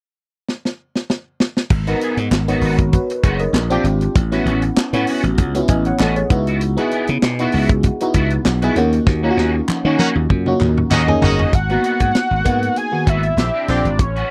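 A tight, dry funk drum kit opens this slick, bittersweet 1980s jazz-funk pop excerpt with a fill, its high-tuned snare and tight kick sitting up front over a lightly swung sixteenth-note feel in 4/4. At 1.7 seconds the band arrives with a punchy, growly slap bass and a slightly broken-up, twangy picked electric guitar riff set lower in the mix. A glassy, bell-like FM electric piano with a warbling chorus follows a moment later, and hollow group handclaps soon add a live-room touch. The harmony moves through minor-seventh, sixth-ninth and eleventh chords, and another drum fill with a band accent leads into the final section. A clear, tight jazz-style horn section enters around 10.0 seconds with a second line, and a fat, detuned sawtooth analog lead with vibrato and a filter sweep carries the melody up front. The sound is close and dry with light reverb, in the manner of a 1970s-style studio recording.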